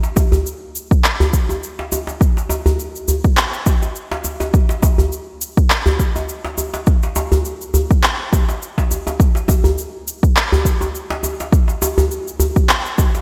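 Overdriven electronic cabasa and handclaps open this earthy downtempo groove alongside an up-front djembe with metal rattles and a soft-handed acoustic tone, joined at 0.2 seconds by a deep, overdriven electronic kick, all swung on the sixteenths and set in a lush hall reverb with bright 1980s-style digital production, in a passage cut from a longer piece.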